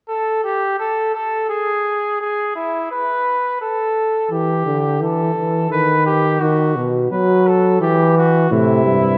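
A wet, spacious scoring-stage reverb with a 2.0-second decay surrounds this short, contemplative and solemn excerpt of a classical brass canzona in an unhurried 3/4 at 86 BPM. A clear, distant flugelhorn opens alone at 0.1 seconds, and a mellow, soft-edged trombone joins with accompaniment at 4.3 seconds as the harmony settles on E minor, then moves through B/D#, B and back to E minor. A roomy, warm tuba enters at 8.5 seconds under an A minor chord, with all three brass parts playing in a classical style with light vibrato.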